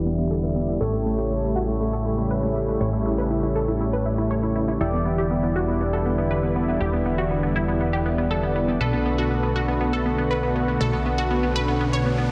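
Glossy, retro stabs from a chorused polysynth punctuate this dreamy, bittersweet house excerpt, set at 120 BPM in a straight 4/4 in E dorian and cut from a longer piece, with dub echo trailing each hit. Beneath it, a thick, airy pad of detuned voices holds sustained chords with a soft attack and chorus, moving through Em7, A7 and Bm7. A bright unison pluck spins arpeggios through a phaser and dub echo, its filter sweeping across the whole passage. A punchy, funky analog bass sits up front with tube saturation, its fast attack decaying into each note. Very quiet electronic sound effects, a downlifter and a riser, appear in the opening 0.8 seconds and again from 11.1 seconds, all held in a lush hall reverb within a dense, heavily limited modern master.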